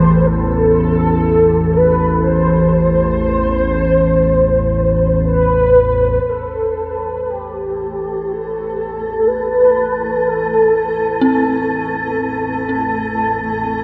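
Bathed in a cavernous cathedral reverb, this dark ambient drone in A minor drifts in free time, its sound eerie and shadowed. An up-front, vintage analog drone warbles low beneath a round, horn-like synth lead with vibrato, phaser and chorus that carries the melody until 12.2 seconds, while a detuned FM synth bell spins inharmonic, decaying arpeggios and a breathy, wind-like tuned noise layer hovers high above. From 6.2 seconds the drone begins a fade-in, and at 7.3 seconds a blurred, bright granular cloud pad enters quietly with sustained chords, fading in as the passage is cut from a longer piece.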